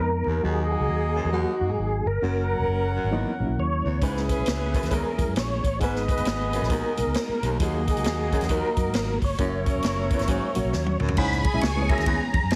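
Heavily compressed, radio-like sound with light reverb frames this urgent, passionate, swinging 1960s-style soul excerpt, where a clear tonewheel organ carries the melody through chorus vibrato and a slow rotary speaker over a mellow horn section, a reedy electric piano with fast tremolo, a round, foam-muted fingered electric bass and a distant, subtoned baritone saxophone riff, before a big-band drum kit with dark cymbals and a punchy kick enters at 4.0 seconds, plays a fill at 10.7 seconds, and a lush, bowed string section joins at 11.2 seconds as a new section begins.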